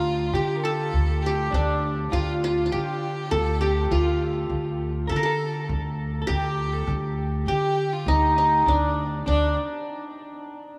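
Hypnotic and melancholic, this Arabic piece in D maqam kurd moves at 101 BPM in a straight 4/4, with a bright-edged, plectrum-plucked qanun carrying the melody up front while a clear, focused bowed violin and a dark, clean hollow-body jazz guitar in the background play second lines, all over a woody, growly pizzicato upright bass, the whole cut from a longer piece and set in a vast, echoing cathedral space.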